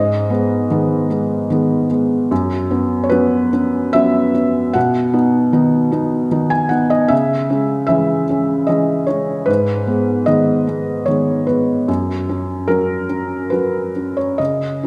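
Swaying in a rubato three-beat pulse, this reflective, wistful neoclassical minimalist fragment features a solo felt-muted upright piano, soft and intimate with audible action noise, sitting up front within a wet, church-like reverb as it moves from G#m through F#sus4, B and C#m before settling on F#5 near 11.9 seconds.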